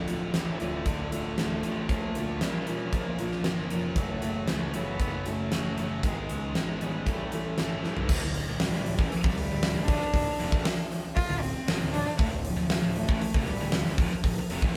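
A rich, bowed cello melody with vibrato and tape echo opens this dark, cathartic quiet-loud alternative rock piece alongside boxy fingerpicked archtop guitar arpeggios in the background, a scooped, distorted high-gain guitar riff and a growly, overdriven fuzz bass, while a huge arena drum kit with a fat snare, punchy kick and bright cymbals sits up front in a lightly reverberant live room; after a drum fill at 7.8 seconds, the archtop drops out and the cello takes a smooth solo from 8.1 seconds.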